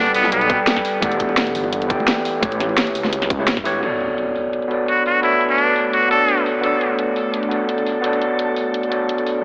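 Liquid drum and bass with a rolling, soulful mood, cut from a longer piece and heard through a lush hall reverb with an AM radio coloring. A gritty, overdriven tine electric piano sits up front through a combo amp for the whole clip, carrying the chords with digital delay, while a muted trumpet with a nasal, vibrato-tinged jazz voice plays brief solo lines at the start and again from 4.9 seconds. Over the opening drop a deep, beating detuned saw bass rumbles beneath a tight electronic kick, and very quiet bongos and congas add bright hand percussion. The kit's cracking snare, hi-hat and crash are filtered yet stay forward. At 3.8 seconds a background impact marks the shift as the bass drops away, and a glassy, ethereal FM pad with chorus fades in behind from 4.6 seconds. The harmony moves through Gmaj9, Em11 and A9 before settling on Bm9.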